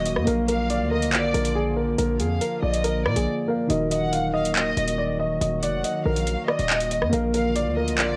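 This ominous, cold drill excerpt opens with a close, bowed chamber violin section carrying a second line through analog delay, a worn, slightly out-of-tune tine electric piano, a warbling lo-fi pad with chorus and built-in reverb, and a punchy sine 808-style bass with a noise layer, all in Eb harmonic minor at 140 BPM with a half-time feel. At 0.1 seconds a dark, short-sustained grand piano takes the melody through cassette tape, alongside an up-front electronic drum kit of handclaps, rim clicks and metallic hi-hats that drops out from 3.3 to 3.7 seconds. The chords move from Bb to Ebm and back to Bb, under light reverb and the grain of a home cassette recording.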